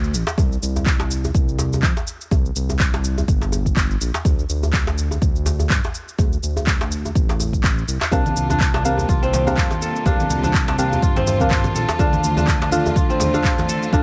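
A deep, tape-saturated electronic kick drum drives this hypnotic afro house excerpt at 124 BPM in 4/4, with a 57% swing on the sixteenths giving the groove a loose, rolling feel. Beneath it, a smooth sawtooth-and-square synth bass with a ring-modulated edge sits in the low register and pumps against the kick. Produced electronic shaker and handclaps carry the top of the beat from the start, joined almost at once by a tight, cracking djembe whose metal rattles sound close. At 8.1 seconds the track opens up as the harmony moves from C5 and D5 to C7sus4 and Dm. A crisp, ringing fingerpicked kora plays arpeggios through tape echo, a dark, nasal chord stab with chorus and a filter pluck adds soft hits, and a lush, bowed symphonic string section holds biting, vibrato-rich sustained chords, all three pumping with the sidechain. Thick-skinned congas sit in the background, and the whole mix has light reverb and a small-room ambience with a rounded, softened top end.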